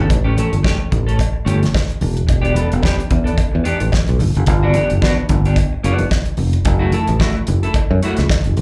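A growly, bright fingered electric bass sits up front in this sultry, danceable disco excerpt, driving the groove with a direct, electric tone and a gentle sixteenth-note swing. Close behind, a damped 70s drum kit gives a dry, polished beat from hi-hat, tight kick and fat snare, its sound airy yet forward. A clean, picked electric guitar carries the harmony through A7, Em7, Gmaj7 and F#m7, coloured by a lush chorus and slapback echo. Low-tuned congas ring very quietly in close focus, while a metallic cowbell with its own slapback echo sits in the background in a small-room space. The whole performance comes across as a live gig heard through the venue's PA, bathed in light club reverb, and is cut from a longer piece, ending after about 8.6 seconds.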